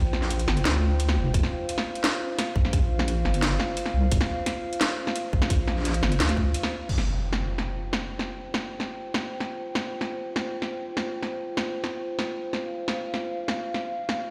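A dark, nasal analog pad with 12-bit sampler grit and sidechain pumping opens alongside a deep, detuned wobble bass in this heavy, cinematic half-time drum and bass excerpt at 173 BPM, where a layered kit of cracking snare, metallic hats and crash sits up front, a tight electronic kick drives the drop until 6.4 seconds, and an electronic impact hits at 6.9 seconds before the moody pad and drums carry on through a stone-room reverb played on a big sound system in a bare room.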